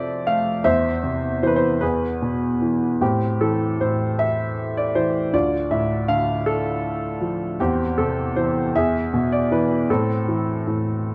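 A close, detailed recording places a warm grand piano up front, its worn, open tone ringing with long sustain inside light reverb. This is a short excerpt of lyrical classical solo piano in A minor, cut from a longer piece and tuned slightly low to A4 = 435 Hz. The tempo sits at a slow 52 beats per minute in a rubato 6/8, giving the music a melancholic, reflective mood. The piano plays alone from 0.0 to 11.1 s, ranging from D2 up to F5. The harmony moves from Dm7/F through Cmaj7/E and E to settle on Am at 3.0 s, then passes through Dm and Am7/E before E resolves back to Am at 9.9 s.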